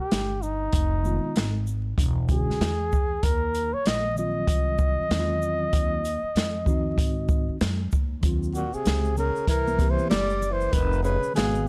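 Nocturnal and mellow, this jazz-hop cut from a longer piece opens with a breathy, vibrato-laden flugelhorn melody up front over woody pizzicato upright bass with tube saturation and an open, acoustic jazz kit with a boomy kick, hi-hat, snare and shaker, all in a swung 4/4. A tine electric piano joins at 1.0 seconds with mellow, clean accompaniment. At 8.2 seconds, egg shaker and congas slip in quietly in the background, and a close-miked tenor saxophone adds a soft-attack second line from 8.6 seconds, all framed by a dry, gritty studio sound with vinyl crackle.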